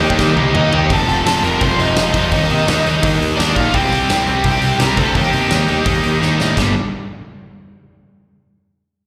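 An angry, urgent punk rock excerpt in G minor at 169 BPM opens with a dark, overdriven lead guitar melody over two bright rhythm guitars sitting in the background with picked riffs, plus a growly fuzz bass, with the guitars carrying slapback echo. A big acoustic rock kit with a punchy kick and bright cymbals plays a fill at 0.2 seconds, then drives the chords from Eb through F and C, and another fill at 6.2 seconds follows the lead's exit as the song turns toward G. The sound is that of a live gig heard through the venue's PA, with a recital-hall reverb around it.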